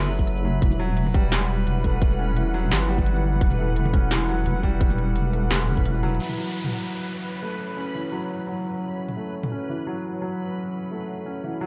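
A dry mix carries this tense, spacious cut from a longer half-time drum and bass piece at 172 BPM in F# phrygian, moving from F#m to Em over a lightly swung groove. A tight, layered electronic kick sits up front beside overdriven industrial drums with a clanging snare, crisp hats, shaker, crash and toms, while a deep, wobbling chorused bass plays until 6.2 seconds, when a downlifter sounds and the chords return to F#m. Throughout, a moody, warbling sawtooth pad pumps under sidechain, a felt-muted upright piano plays mellow arpeggios through a low-pass filter and delay with audible action noise, and a bright, dreamy reversed granular texture hovers on B4.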